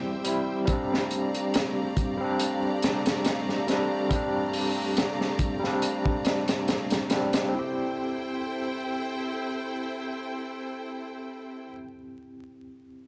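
Vinyl crackle and a light studio reverb frame this brooding, hypnotic trip hop fragment, cut from a longer piece, where a barky, overdriven tine electric piano played through a combo amp carries the accompaniment up front, colored by tremolo, a low-pass filter and tape echo. A clear, lush bowed string section holds sustained chords with vibrato, roughened by vintage 12-bit sampler grit, as the harmony moves from a rootless Am7 to Bb6 and back to Am7 at 7.5 s. A crunchy, saturated breakbeat kit with a high-tuned snare, tight kick, hi-hat and a dark, rolled-off top drives the groove up front from 0.2 s until it drops out at 7.5 s.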